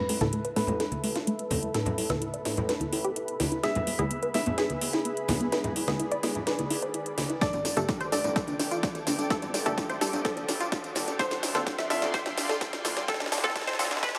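An emotional, expansive progressive house build-up, cut from a longer piece, moves through a straight groove as filter sweeps open up the piano, supersaw pad, arpeggio synth and pluck together. A clear, slightly worn concert grand piano carries the melody until 12.3 seconds, its short notes treated with sidechain pumping, a low-pass filter and tape echo, over a lush, full-bodied supersaw pad that holds sustained chords with a slow attack. A tight, driving sequenced synth spins evolving, chorused arpeggios with tape echo, while a punchy, wave-folded unison pluck adds stabs in the background, and a fat, detuned analog bass sits very quietly underneath with a faint electronic riser. An up-front, overdriven house kit plays a running fill of cracking snare, metallic hats and tambourine, joined by ringing congas and bongos struck with hard hands, and a punchy overdriven electronic kick enters at 7.4 seconds. 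A moderate, lush hall reverb spreads the mix into a spacious room as the chords move from Asus2 through E and Gsus2 to Dm7.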